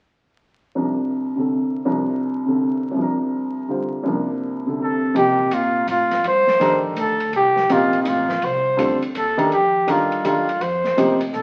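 A worn, intimate baby grand piano with audible action noise opens this cool, searching modal jazz excerpt in C dorian, a swung 3/4 at 165 BPM, voicing a C9sus4 before a veiled, breathy bucket-muted trumpet with light vibrato takes the melody up front at 4.8 seconds and woody pizzicato upright bass and a dark, smooth drum kit with a boomy kick join around 5.1 seconds, set in a wet club reverb amid the crackle of a very old 78 rpm record.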